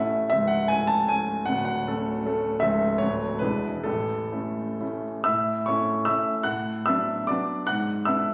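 Graceful and rustic, this short classical passage is a romantic triple-time dance in A major for solo grand piano, cut from a longer piece. The tempo moves freely between 121 and 168 BPM with a rubato feel, and dotted rhythms give the 3/4 metre its lilt. The piano sounds intimate, natural and up front, with its action noise clearly audible and a range reaching from deep in the bass up to the high treble. Its harmony settles around A major, touching on a Dmaj7 and an E7 before resolving, and a new section begins at 5.3 seconds, colored by a Bm7 over an A bass and an E7 over G#. Captured on a phone in the room, the playing sits in a moderate recital-hall reverb that adds a gentle sense of space.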